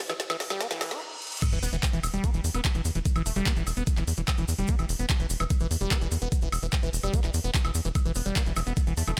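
Psychedelic and intense, this psychedelic trance excerpt in E minor at 147 BPM opens with a short build-up of drum fill, filter sweeps on the squelchy liquid acid bass and a very quiet riser with reverse cymbal before a brief stop, then drops at 1.4 seconds as an overdriven, knocking electronic kick, a drum kit with woody snare and bright hats, grainy background maracas and a tight, punchy sequencer bass drive beneath the phased, sidechain-pumping acid riff, while a juicy, ring-modulated blip pluck surfaces in the background.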